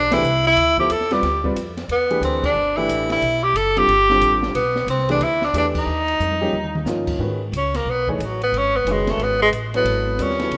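A clear, up-front tenor saxophone with light vibrato and scooped notes leads this cool, intense modal jazz swing fragment, backed by thumpy pizzicato upright bass, an intimate upright piano with audible action noise, and an open drum kit with dark cymbals and a punchy kick that plays a fill at 6.2 s before the saxophone takes its solo at 7.2 s, all in a rough home demo mix bathed in lush hall reverb.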